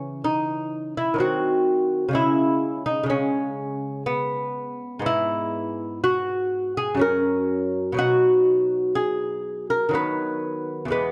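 A solo lute, fingerpicked on delicate gut double courses with some strings doubled at the octave, sits up front in this serene, flowing baroque-style dance in 3/4, played with a gently rubato feel. The harmony moves from C#m through shadowed diminished colour before settling toward F# and arriving on B at 8.0 s. A generous recital-hall reverb surrounds the instrument across this brief passage cut from a longer piece.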